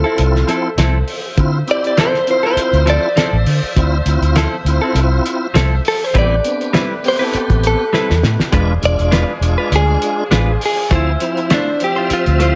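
Straight-eighth soul blues at 101 BPM in 4/4, smoky and brooding, heard in a short cut from a longer piece. A clean, compressed electric guitar recorded direct carries the melody from the start, soloing through the whole passage with spring reverb around it, while a second clean guitar adds stabs colored by a vibrato effect. A lightly overdriven tonewheel organ fills out the accompaniment with chorus vibrato and a slow rotary speaker, and a distant, roomy horn section holds loose sustained chords behind it. A dark, foam-muted fingered bass sits round and punchy up front, joined by a cloth-damped drum kit with a fat snare, tight kick and hi-hat whose muffled, gritty sound has a rolled-off top. The harmony moves from Dm9 to Am9 at 6.1 seconds and E7b9 at 8.5 seconds, just after a drum fill, before returning to Dm9, all in a small room ambience.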